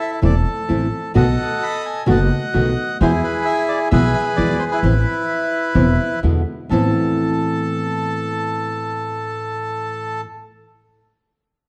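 Tango in A harmonic minor at 130 BPM in 4/4, played with a rubato feel and a passionate, melancholic mood, cut from a longer piece. A reedy, airy bandoneon carries the melody up front, ranging from E4 to B5 across the whole clip. A full-bodied, fingerpicked nylon-string guitar with a deep classical tone sits up front beside it as accompaniment. A woody, growly upright bass with steel strings plays pizzicato underneath, thumpy in the low register, and stops at 6.9 seconds, just after the second section begins at 6.7 seconds. The harmony moves from Am through B7 and E to Amadd9 and E7 before settling back on Amadd9. A moderate recital hall reverb and a dark, warm production surround the trio.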